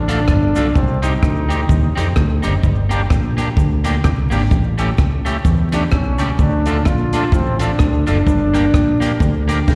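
A swung ska pulse at 128 BPM in G minor drives this mischievous, energetic clip cut from a longer piece, with a compact cocktail kit's high-tuned snare and punchy kick sitting beside a round, up-front fingered electric bass and a grainy cabasa tucked in the background. A bright trombone carries the melody with light vibrato and scooped notes, dropping out at 2.4 seconds and returning at 5.7 seconds, its tape and slapback echoes trailing behind it, while a gritty, overdriven tonewheel organ with key click and slow rotary speaker throws in stabs. Two slightly broken-up picked electric guitars fill out the accompaniment and a low, compressed riff, all heard as a live gig through the venue's PA with recital hall reverb and vinyl crackle.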